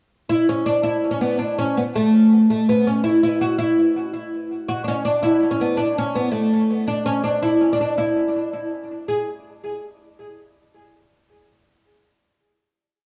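An echo-heavy mix with a moderate spring reverb and a touch of studio ambience frames this short, complete Celtic folk piece in E mixolydian, which moves in a straight 6/8 at 109 BPM with a cheerful, bright mood. A lone oud, up front and colored by analog delay, carries the whole thing from 0.3 to 9.3 seconds, its plectrum-plucked double strings sounding woody and fretless as it spins a motif-based melody in period phrases. A single final note rings out from 9.1 seconds until the piece closes at 10.2 seconds.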